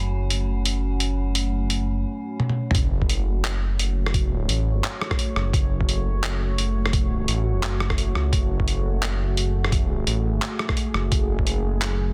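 A dense, heavily limited mix with light reverb frames this tense, dark slice of half-time drum and bass at 172 BPM in F# minor, cut from a longer piece and carrying a slight swing on the sixteenths. A deep, moody ambient pad holds sustained chords throughout, its detuned sawtooth layers and sub octave softened by chorus, built-in reverb and a sidechain pumping that ties it to the beat. Underneath sits an up-front, rumbling detuned saw bass, saturated and beating, anchoring the low end from start to finish. An eerie, warbling FM drone with a metallic, inharmonic edge hovers only through the opening 2.0 seconds, while a gritty, tape-warm sampler kit of handclaps, hi-hat, rim click and toms enters at 0.3 seconds, its snare soft-clipped and the whole kit pitched down and re-recorded in a small room. After a drum fill, the drop lands at 2.7 seconds with a compressed, thumpy electronic kick joining the groove until 11.5 seconds.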